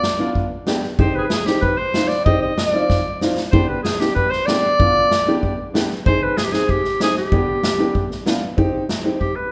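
A straight 2/4 pulse at 95 BPM carries this festive, soulful klezmer passage in G phrygian dominant, cut from a longer piece. A street-band drum kit sits up front with a boomy kick and a medium-tuned snare, sounding airy and polished, and it plays a fill from 2.9 to 3.5 seconds. The bright clarinet leads the melody from the start, soft in attack and vintage in character, played in a classical style as the solo voice. A clear, woody upright piano joins at 0.2 seconds as accompaniment, its smooth tone supporting the clarinet. The harmony moves among G, C minor and A-flat, and the band plays live in one room, bathed in a large studio reverb.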